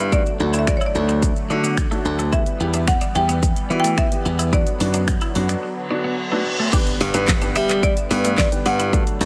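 Upbeat and euphoric, this dance-pop excerpt moves at 109 BPM in a straight 4/4, cut from a longer piece and tuned to A4 = 442 Hz. A punchy, layered electronic drum kit sits up front with a fat snare, handclaps, finger snaps, shaker, hi-hat and crash, joined by a glassy, bright slap bass whose sidechain pumping gives the groove its surge. A woody marimba struck with hard mallets carries the melody, close and dry yet echoed by a digital delay, while a concert grand piano with deep bass and short sustain adds pumping accompaniment. Further back, a bright twelve-string electric guitar plays a clean, compressed riff through lush chorus, and a thick, nasal, detuned sawtooth pad holds sustained chords with its own chorus and pumping. The harmony moves from D to Bm at 4.5 seconds, and an electronic reverse cymbal rising from 5.8 seconds lands on an impact at 6.7 seconds as the music shifts to G, all in a light reverb.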